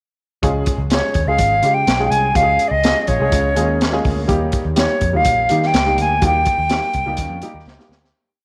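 At 0.4 seconds a crunchy breakbeat kit with a high-tuned snare and tight kick sets up a danceable, uptempo 1960s-style soul backbeat at 124 BPM, together with a dark, foam-muted electric bass playing a round, syncopated line with chromatic approach notes and a worn, woody, slightly detuned upright piano comping rhythmic chords with grace notes over Db moving to Eb. An airy alto recorder sits up front with a soft attack, chiff, vibrato and tape echo, singing expressive, motif-based song phrases, while a twangy, slightly broken-up electric guitar slips in from 3.1 seconds with short background fills in thirds. The whole piece is a brief verse in a light, warm studio ambience that fades out, closing on a drum fill at 7.7 seconds.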